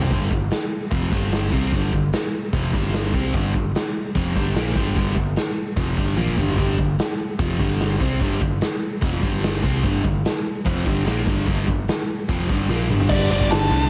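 Heavily compressed, radio-like sound with a small room's light reverb frames this swaggering, anthemic hard rock excerpt at 148 BPM, where a crunchy rhythm guitar and a sludgy distorted guitar set back in the mix drive a riff over a G5 chord, a bright, growly picked electric bass, and a gritty, punchy garage drum kit up front with crash, hi-hat, snare and toms, whose fills land at 6.2 and 12.7 seconds before a bluesy overdriven lead guitar bursts forward in the upper register at 13.1 seconds.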